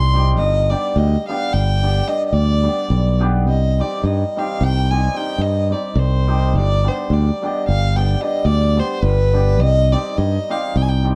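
A bright, growly fingered electric bass sits up front in this bittersweet, restless Balkan wedding-band excerpt. It drives a brisk 11/8 at 215 BPM (eighths), in C harmonic minor, over chords that alternate between G and C minor. A single dark, earthy bowed violin carries the melody with light vibrato and a smooth top, set in plate reverb, while a mellow hammered cimbalom rings and shimmers beneath it as accompaniment, all within a dusky production with light reverb.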